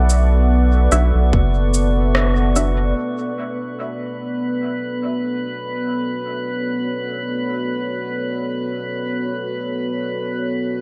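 A round, deep analog bass anchors the opening of this meditative, spacious ambient dub excerpt, briefly joined by a tight electronic kick drum, a tape-toned electronic shaker and rim click with dub echo, and muted, filtered dub chord stabs carrying phaser and dub echo; these fall away by 2.9 s, leaving a moody, detuned ambient pad with chorus and reverb and a calm glass-harmonics texture of drifting overtones sustaining through the move from Dadd9 to Bm7 at 3.0 s.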